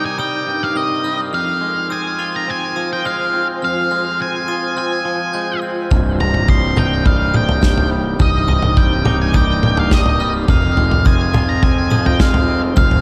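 Set in a moderate concert hall reverb, this cathartic, melancholic post-rock passage at 105 BPM in 4/4 opens with a dark, distorted octave-fuzz lead guitar carrying the melody up front over a twangy, clean electric guitar arpeggio, a sparkling brass-malleted glockenspiel ringing in the background and an ethereal, airy pad holding sustained chords in chorus and reverb through C minor and F minor, until a growly fuzz fingered bass and a loose indie drum kit of punchy kick, snare and toms enter at 5.9 s.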